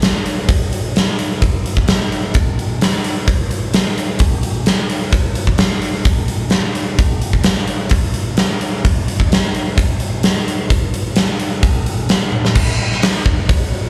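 A huge acoustic arena drum kit carries the excerpt on its own, driving a heavy, straight 4/4 rock beat at 129 BPM with crash cymbal, hi-hat, kick, snare and toms. The kit sits up front, with a punchy kick, a medium-tuned snare, bright cymbals and a pumping hall-like room sound. Heard as a live gig through the venue's PA with moderate club reverb, this cut from a longer piece breaks into a drum fill at 12.3 seconds, leading into a brief new section at 12.6 seconds.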